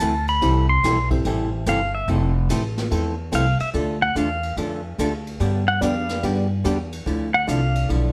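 Light reverb surrounds this playful, cheerful western swing excerpt, where an up-front pedal steel guitar, clean and compressed with fingerpicked slide lines and volume swells, carries the melody as a solo over a dark, hollow-body archtop guitar, a woody, thumpy gut-string upright bass and a distant, roomy brush kit with a boomy kick and a rolled-off top, while a detuned, jangly honky-tonk upright piano appears from 0.4 to 1.6 seconds and again from 5.8 seconds.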